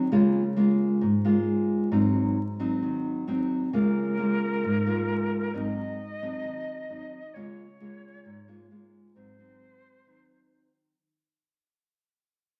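Bossa nova with a romantic, breezy mood, cut from a longer piece, where an up-front fingerpicked nylon-string guitar in a warm classical style rocks between Db6 and Ab7 chords. At 3.7 s a silver concert flute joins as a second line, its airy, bright tone carrying vibrato, a crisp attack and an unsteady quality. The sound sits in a wet, large studio reverb over a layer of vinyl crackle, and the whole clip fades out across its 11 seconds.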